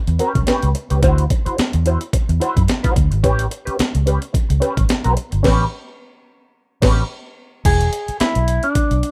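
A dry, rough home-demo sound frames this gritty, playful funk cut from a longer piece, moving at 109 BPM in 4/4 with a light sixteenth-note swing over chords of A9, D9 and E7. Up front, an overdriven breakbeat sampler-style kit with a thumpy kick and compressed, small-room character sits beside a dark, round, foam-muted fingered bass, while a mellow, clean guitar adds wah and lush chorus to its accompaniment. The band hits an accent from 5.4 seconds, and at 7.7 seconds a clean electric guitar solo enters and carries on to the end.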